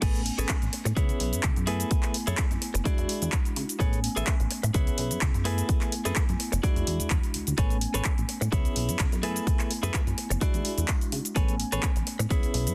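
A layered, punchy electronic kick sits up front and drives this sunny, funky filtered disco house drop at 127 BPM in 4/4, with a 54% swing on the 16ths. Around it, an overdriven, dry analog drum machine adds crash cymbal, handclaps, hi-hat and shaker, its hats, cymbals and percussion pumping against the sidechain and darkened by a low-pass filter. A dark, plucky analog bass built from sawtooth and pulse waves, with a fast attack, decaying filter pluck and moving notch, anchors the low end, also pumping and low-pass filtered. A mellow tine electric piano, heard through its built-in speakers, carries the accompaniment with a phaser, while a bright, twangy, direct-recorded clean guitar plays a picked, compressed riff, both sitting low in the mix under the same pumping and filtering. The harmony in A major cycles through Amaj9, C#m7, F#m11 and E9 in a dense, heavily limited, nearly reverb-free mix, with the kick dropping out at 12.4 s just before this fragment of a longer piece ends at 12.7 s.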